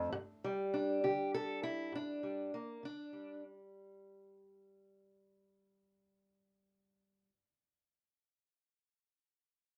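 This is acoustic country blues with a soulful, rollicking mood, a short clip cut from a longer piece. It moves at 67 BPM in a 12/8 metre with a straight feel. A single fingerpicked steel-string acoustic guitar carries the whole clip, playing solo from 0.0 to 7.3 seconds across a range from F2 to A4. Its dark, parlour-style tone sits up front. It opens on a G5 chord at 0.1 seconds, and the first 3.7 seconds are a fade-out. Close, detailed microphones catch the instrument in a wet booth ambience with a brief decay of 0.2 seconds.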